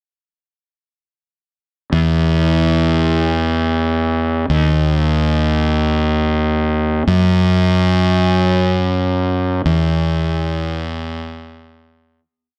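At 1.9 seconds a lone fingered electric bass enters, its dark, round fuzz tone pushed up front through overdrive. This short post-rock piece moves in a slow 6/8 at 47 beats per minute, counted in dotted quarters, with a straight feel and tuning set to A4 = 435 Hz. The bass drives steady eighth notes within a low, narrow span from D#2 to F#2, yet the mood reaches for something soaring and euphoric. A moderate recital-hall reverb gives the amped, direct sound a sense of space around it. The whole piece is a single section that fades out between 9.7 and 12.2 seconds.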